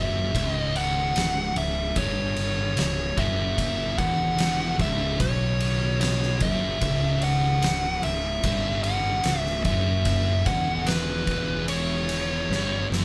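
A compressed, up-front fuzz lead guitar carries a dark melody over a brooding, hypnotic stoner and doom metal groove in C# minor at 74 BPM, held on a single C# minor chord throughout this short section of a longer piece. Two thick fuzz guitars play picked riffs, one very quiet and the other sitting warmly in the background, while a round, overdriven fuzz fingered electric bass anchors the low end and a very quiet, silky vintage string machine sustains mellow chords with ensemble chorus. An oversized, low-tuned drum kit with a punchy kick, fat snare and ride cymbal enters at 0.3 seconds, gritty and pumping in a bright stone room, and plays a fill from 12.5 seconds, all in the light reverb of a band playing live together.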